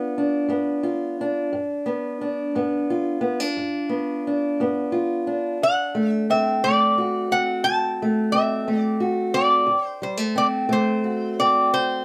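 A slow 12/8 pulse with a straight feel carries this swaggering, laid-back excerpt of acoustic country blues, tuned to A4 = 436 Hz. A fingerpicked steel-string parlour guitar plays the accompaniment from the opening second to the close at 12.0 s, its dark, boxy tone sitting up front in the low and middle register. At 5.6 s a lap resonator guitar enters with the melody high above it, played with slide and fingerpicks, bringing a metallic, nasal bite. Its entrance coincides with the harmony shifting from G7 to D7. Close, detailed microphones and a moderate studio reverb give the pair an intimate, present sound.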